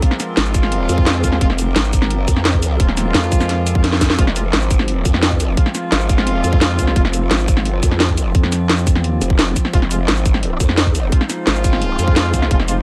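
A growling, wobbling bass sits up front in this dark technical drum and bass cut, saturated and bright with a formant-filtered edge, entering at 0.4 s and pumping against the beat in F minor. At 173 BPM in a straight 4/4, a tight, layered electronic kick drives the groove alongside a kit of cracking snare, metallic hi-hats and shaker, with a drum fill at 3.8 s. A thick FM bass adds short growling bursts on a single F, first around 3.1 s and again near 8.3 s. Clear brass ensemble stabs with light vibrato and a soft attack punctuate the mix, echoed by digital delay, dropping out briefly before returning at 9.7 s. Behind it all, an eerie inharmonic drone holds sustained chords in the background, ring-modulated and chorused with its own reverb, giving this excerpt of a longer piece a tense, mechanical mood in an otherwise dry, loud mix.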